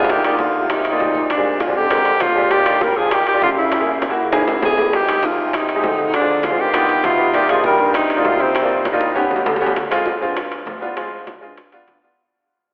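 Driving and sophisticated, this short Afro-Cuban jazz cut from a longer piece sets a clear, vibrato-laden alto saxophone melody up front beside a present grand piano, with a very quiet vintage trombone second line until 8.9 s, a mellow, subtoned bass clarinet carrying the bass, and ringing metal-shell timbales, round, dry bongos and bright, saturated background congas beneath, the mix heard through a long cathedral reverb and a telephone-like sound, with a drum fill leading into a fade-out from 9.8 s.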